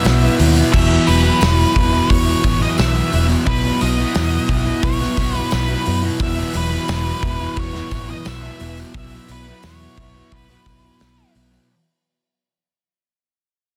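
Wistful and hazy, this short cut from a longer shoegaze and dream pop track moves at an unhurried, straight 4/4 pace over a gentle sway between Bsus4 and Esus2 chords, with a fade-out running from 0.7 seconds to the close. A dark, distorted octave-fuzz lead guitar carries the melody through analog delay, set against a stack of riffing guitars: a thick, picked fuzz guitar soaked in lush chorus and a slightly broken-up, lo-fi guitar through a small old amp with reverse reverb. Beneath them, a direct-recorded clean electric guitar adds bright, compressed arpeggios at a very quiet level, while a deep, moody analog pad built from detuned square, sawtooth and triangle waves with ring modulation and chorus holds slow-blooming sustained chords far in the background. The vintage fingered bass is round and foam-muted, sitting heaviest in the mix. A loose indie drum kit, up front with a tight kick, medium-tuned snare, hi-hat and crash, breathes with a pumping small-room sound, and a jingly tambourine glints faintly behind it. 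The whole is dense and heavily limited, with light small-room reverb wrapping the haze.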